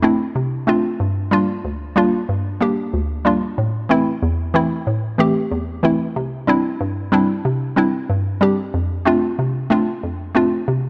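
A hollow, detuned square-wave pluck plays alone and up front for the whole 10.9 seconds of this bouncy, tough dancehall fragment, its sub octave, noise layer and chorus giving a mellow, decaying tone over F6, Gm7, Am and Cadd9 chords, set in light reverb.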